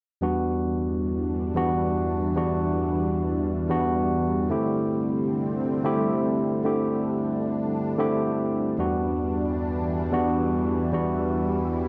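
A straight 4/4 pulse at 112 BPM drives this sensual, groovy nu-disco passage in E minor, cut from a longer piece. A bright, barky tine electric piano plays the accompaniment from 0.2 s, sitting clean and up front with a dub echo trailing its phrases. At 0.7 s a lush, thick unison pad enters with sustained chords, its detuned sawtooth and square-wave layers and sub octave coloured by chorus and phaser, with a slow attack and long release. A filter sweep on an analog synth pad runs for the length of the passage as the harmony moves from Em7 to D7sus4 and back to Em7. The sound carries a moderate plate reverb and the ring of a big sound system heard in a bare stone room.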